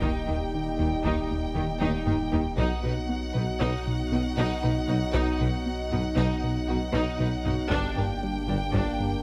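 A close, detailed recording with light reverb presents this cinematic excerpt of a hybrid orchestral and electronic film score, relentless and vast in mood, moving in an uneven five-beat metre with a straight feel. A clear chamber violin section carries the melody high up with intense, vibrato-rich bowing, while a lush symphonic violin section sits in the background on a second line and a focused viola section fills in the accompaniment. Beneath them, a hollow, flute-like pad with chorus holds dark sustained chords alongside a tight French horn section, and a punchy, wave-folded analog bass plays a funky plucked riff. The low end is thick, with a saturated sine sub bass joined by very quiet bowed cellos and double basses and a mellow tuba, all three of which stop at 8.8 seconds. Compressed, heavy-stick taiko drums drive from the background, with a fill from 1.8 to 2.6 seconds, as the harmony moves from Eb to B and then to Gm.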